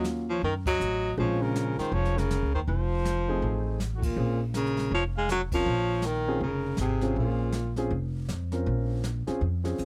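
From the first beat, this swinging, late-night small-group jazz excerpt in Bb minor at 160 BPM sets an up-front baritone saxophone melody, warm with vibrato and scooped notes, over a mellow, breathy trumpet second line, with grand piano accompaniment, a woody, thumpy pizzicato upright bass on gut strings and a brushed kit with dark cymbals and a boomy kick, the band landing accents together before the horns drop out at 7.7 s and the piano, bass and drums carry on to the end in a dry, closely miked sound.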